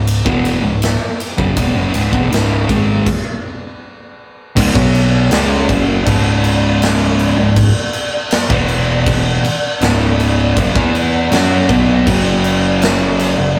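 A rough rehearsal-room recording with warm saturation and a small room's moderate reverb carries this hypnotic, ominous stoner and doom metal excerpt at 80 BPM in C# minor, where a double-tracked fuzz guitar riff sits up front over punchy, overdriven picked electric bass and a big acoustic rock kit with bright crash and ride cymbals, a medium-tuned snare and a punchy kick, all halting in a stop from 3.1 to 4.6 seconds before grinding on through power chords on C#, E and F#.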